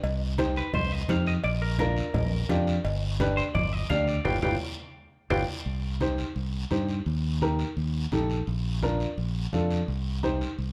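A bright, twangy clean electric guitar carries the melody in this driving, fiery cumbia, its picked, scooped and compressed tone bathed in spring and plate reverb before it drops out at 5.4 seconds. Beneath it, a fingered electric bass sits up front with a direct, amped sound, and a woody, slightly detuned upright piano plays smooth vintage accompaniment close to the listener. Soft-handed, low-tuned congas with a thick skin and a raspy guiro sound distant, as if in a large room, while ringing metal-shell cowbell and timbales sit in the background during the opening passage. A band accent and drum fill lead into a new section at 5.7 seconds, where the harmony moves through Cm, Eb and Bb. The production is dark and warm with light reverb, and the clip is cut from a longer piece.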